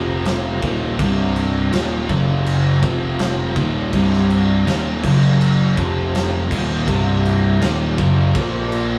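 Stoner and doom metal with an ominous, hypnotic pull, built on a riff shared by a bright, double-tracked overdriven guitar and two thick fuzz guitars, one dark and one warm, over a round, punchy overdriven bass, a boomy, gritty low-tuned drum kit pumping in a big room, and a very quiet tonewheel organ holding clear chords through a slow rotary speaker with key click, all in a small-room live sound.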